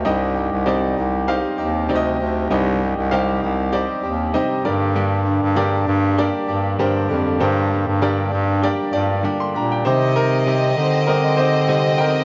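Driving and dramatic, this pop excerpt pairs a woody, vintage upright piano and a twangy, bright clean electric guitar riff with spring reverb over a distant, roomy bass clarinet line, until at 9.9 s the piano steps into a solo as a warm, intimate violin section bowing sul tasto with tape echo adds a second line, all set in a small echo-chamber room.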